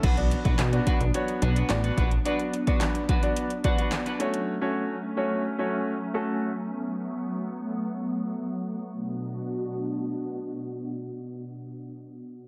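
Bittersweet and energetic, this dance-pop excerpt at 108 BPM in B minor moves from Bm to F#m under a filter sweep. A punchy, overdriven deep house kit with fat snare and metallic hats drives it beside a plucky, funky sawtooth-and-square bass that drops out at 2.2 s, while a clean, picked electric guitar riff in lush chorus and a brilliant concert grand piano with short sustain fill the middle. An ethereal, glassy FM pad pumps with the sidechain and holds its chords alone to 11.9 s in light digital ambience.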